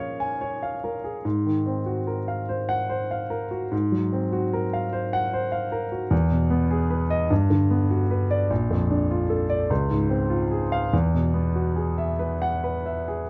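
A warm, smooth grand piano with a vintage, up-front tone plays alone in this serene, dreamy impressionist classical passage cut from a longer piece, drifting in a slow 6/8 at 50 BPM with uneven, rubato phrasing across a range from A#1 to Ab5, its rich harmony moving from Bbm7 and Ab13 through a chain of major-seventh chords to close on Eadd9 at 10.9 seconds, all captured by close, detailed microphones with light reverb.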